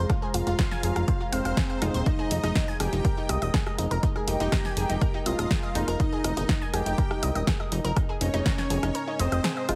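Cinematic and dramatic, this melodic techno excerpt runs at 122 BPM in a straight 4/4, built on an Ebsus4 chord. A deep, moody pad with a slow attack and long release sits in the background with chorus and its own reverb, while a round analog pluck spins arpeggios through a moving notch and dub echo. Up front, a fat, detuned sawtooth bass with a filter sweep pumps against the punchy, tape-warm electronic kick, and a punchy analog drum machine adds hi-hat, rim click and snare. From 0.3 seconds a bold unison lead with a sub octave carries the mellow melody, joined by a big, bright polysynth second line tinged with ring modulation, and from 0.5 seconds muted, filtered dub chord stabs decay under chorus and echo. The mix is dry and heavily compressed with a radio-like sound, and the kick drops out at 8.9 seconds as the other parts carry on to the cut.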